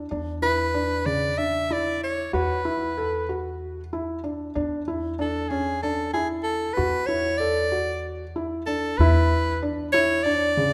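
Restless and shimmering, this short excerpt from a longer contemporary chamber piece moves in an uneven 7/8 at 189 BPM counted in eighths, with a felt-muted upright piano rolling soft, intimate arpeggios up front over a pizzicato upright bass whose woody, thumpy gut-string tone sits low and dark. From 0.4 seconds a clear soprano saxophone carries the solo melody in a jazz style, colored by vibrato and scooped notes. The harmony rests on E7 before settling to a bare E5 chord at 9.0 seconds, all wrapped in a moderate concert hall reverb.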